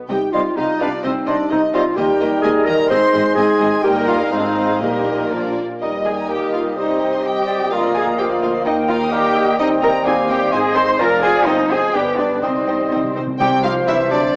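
A worn, warbling cassette sound with a small-speaker tone and a moderate stage reverb frames this restless, dramatic excerpt of a quick classical-period symphonic movement in 2/4 at 127 BPM, where rich, smooth violin sections carry the melody and a second line over a mellow clarinet, bright airy flutes, a cor anglais, a background viola section, a warm bassoon, dark distant French horns holding chords, expressive cellos and a double bass section on the bass, as Eb major turns to C minor at 9.6 s and close, dry timpani drive a fill from 12.4 s.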